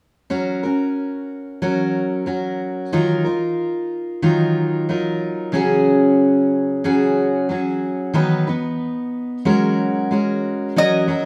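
A full-bodied, picked jumbo steel-string acoustic guitar carries this hopeful folk excerpt in a large studio space, with audible finger squeak as it moves from F# through D#madd9, C#sus4 and B/D# to F#add9, and as it rings out, a bright, nasal, metallic lap resonator guitar, played with slide and fingerpicks, briefly sounds a single high note at 10.8 seconds.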